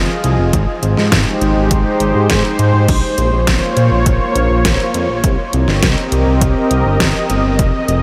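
A lush, detuned sawtooth pad sits up front with slow-attack chords that pump with sidechain compression. It moves through Fm7, Abmaj7, Bbmadd9 and Cm7 over a glossy, mellow synth bass in this nostalgic, cinematic synthwave passage at 102 BPM in 4/4. An overdriven pop kit with crash, hi-hat and a deep snare comes in at 0.2 s, followed by a punchy analog kick at 0.5 s, and the whole short cut from a longer piece is soaked in huge, dreamy reverb.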